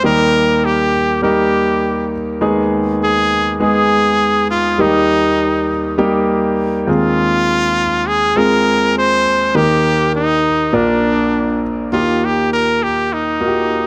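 A brilliant, punchy trumpet sings a hopeful, anthemic pop melody with vibrato, close and up front over a clear concert grand piano whose deep bass, long sustain and audible action noise give an intimate, polished accompaniment, with a light swing in the rhythm and a moderate plate reverb around them, in a short cut from a longer piece.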